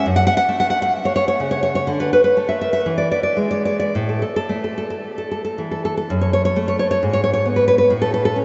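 Romantic solo classical guitar in A major: a sunny, nostalgic 8.4-second excerpt at a rubato 52-70 BPM in 2/4, where a fingerpicked nylon-string guitar with deep classical tone, audible finger squeak and tape echo sits up front, moving through F#m, Dsus2, E and A5 before a closing turn through G#madd11 to A at 7.9 seconds, all soaked in a dreamy, huge ambient reverb with a soft, dark top end.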